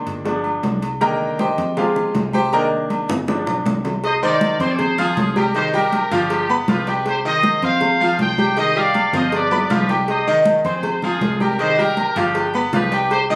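A brilliant, up-front concert grand piano leads the opening of this driving, passionate salsa excerpt in C minor at 159 BPM, moving through Cm7, Fmadd9 and G7 over a dark, punchy fingered electric bass, damped high-tuned congas in the background, round low-tuned cowbell and bongos, and ringing metal-shell agogo bells and timbales. A drum fill at 3.1 seconds leads to a tight, vintage trumpet section entering at 4.0 seconds to carry the melody with light vibrato, and another fill arrives at 9.1 seconds. The sound sits in a large studio reverb with compression, captured by a phone in the room.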